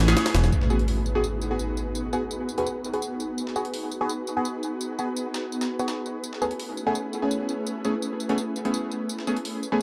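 Drum and bass with a jungle edge at 168 BPM in G# phrygian, this nostalgic, atmospheric excerpt opens with a deep, rumbling detuned saw bass and a pitched-up, high-tuned jungle kit that both stop by 0.5 s, as an electronic impact hits from 0.5 to 2.0 s and a gritty, medium-tuned breakbeat kit with high-passed hats, snare and tambourine carries on alongside an ethereal, warbling pad and nasal, band-passed chord stabs drenched in phaser, lush chorus and dub echo, moving from Amaj9 to G#m7 and back to Amaj9 at 6.2 s in a dark production with digital ambience.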